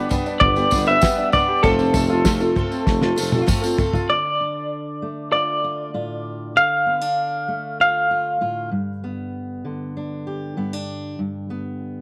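A slightly broken-up electric guitar through a small old amp carries the melody up front in this anthemic, uplifting indie folk excerpt, its lo-fi, compressed tone shimmering with tremolo until 8.7 seconds. At a straight 97 BPM in 4/4, the opening moves from G to F. A boxy archtop guitar with audible finger squeak, a worn, slightly detuned upright piano playing arpeggios through tape echo, and a mellow, soft-attack tuba on bass fill out the sound. A cloth-damped drum kit with a fat snare and tight kick sits up front beside a jingly tambourine, and the kit plays a fill from 2.9 seconds. At 4.1 seconds the rest of the band drops away beneath the electric guitar, and a dark, fingerpicked steel-string acoustic guitar takes over the accompaniment through Dm and back to G, all within a small room and moderate spring reverb.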